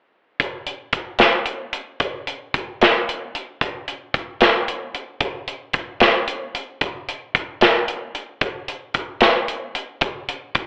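Intricate and wistful, this rock excerpt in 6/8 at 75 BPM features a modern acoustic studio drum kit of hi-hat, kick and snare, sitting up front from 0.4 to 10.7 seconds with a tight kick, a medium-tuned snare and a mid-forward, rolled-off top, while light reverb and a telephone-like sound color the whole recording.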